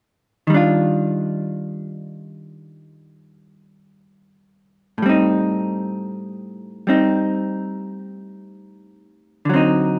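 A moderate echo-chamber reverb with a two-second tail surrounds this intimate, smoky jazz excerpt, cut from a longer piece with a slow swing feel. A vintage hollow-body electric jazz guitar sits up front as the lone accompaniment, its dark, clean, picked tone moving from Ebmaj9 to Am7b5 at 5.0 seconds. The guitar plays from 0.5 to 10.0 seconds, ranging from A2 to F4.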